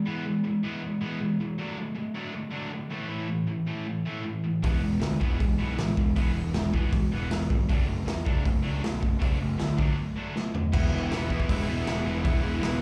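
This short cut from a longer punk rock piece sounds like a live gig heard through a club PA, with small-room ambience and club reverb around the band. A bright, distorted guitar opens alone, up front and double-tracked, playing a riff with a slapback echo over chords moving from E to D/F# and an A5. At 4.6 seconds a growly fuzz bass with overdrive enters alongside a raw garage drum kit of boomy kick, medium-tuned snare, hi-hat, toms and dark crash cymbals, all gritty and saturated with a pumping room sound and a rolled-off top. A brief break at 10.0 seconds ends in a drum fill, and from 10.7 seconds a second, darker overdriven guitar joins in the background with a compressed, double-tracked riff over the E chord. The straight feel keeps the mood rebellious and upbeat.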